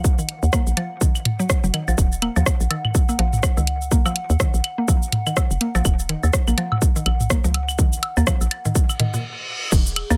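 Minimal techno with a sparse, cool mood and a swung sixteenth-note feel, cut from a longer piece. A punchy, up-front electronic kick and a hollow, bouncy FM bass with sidechain pumping anchor the groove. Around them sit a house drum kit of crash, hi-hat, rim click and shaker, analog-flavoured electronic claves, toms and woodblock run through delay, and a woody, round mallet-like synth pluck carrying the riff through chorus and dub echo. A warbling, lo-fi tape-like pad fades in underneath from the start, and a reverse cymbal at 9.0 seconds leads into a stop at 9.2 seconds, all in a dry mix.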